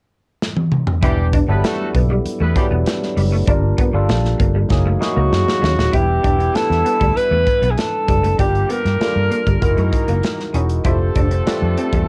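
A breathy, whispered alto saxophone carries the melody from 5.0 to 9.9 seconds over a slick, urban 1980s jazz-funk pop groove at 98 BPM, where a punchy, up-front studio drum kit opens with a fill before a round, foam-muted fingered bass, a barky tine electric piano with overdrive and lush chorus, a slightly broken-up picked electric guitar riff and a tight vintage horn section with octave doubling join at 1.0 seconds, all heard through a lightly reverberant home cassette recording.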